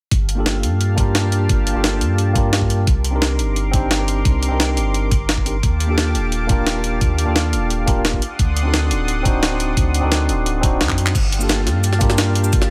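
A dreamy, lush liquid drum and bass excerpt in G minor at 174 BPM opens with a thick, detuned sawtooth pad holding slow-attack chords through chorus and sidechain pumping, over a round sine sub bass, a knocking layered electronic kick and a gritty, pitched-up jungle sampler kit of snare, hi-hat, shaker, handclaps and crash, with a drum fill arriving at 10.9 seconds, while a clean tine electric piano enters at 0.3 seconds through a low-pass filter and tape echo as the chords move from Gm9 through Cm9, Ebmaj9#11 and D7b9 back to Gm9.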